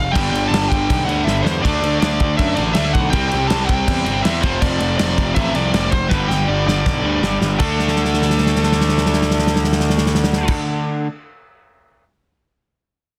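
An upbeat, rebellious punk rock excerpt at 161 BPM in straight 4/4 opens with a smooth, overdriven lead guitar carrying the melody over a growly, fuzz-laden picked bass set up front. Two bright, picked electric guitars, one distorted and one overdriven, sit in the background playing a riff through G5, D5, C and F5, while a loose small-room acoustic kit with a tight kick, medium-tuned snare and crash cymbal adds fills, the longest running from 7.8 to 10.5 seconds. Light reverb colours a dense, heavily limited modern master, and the drums carry on alone after the other parts stop.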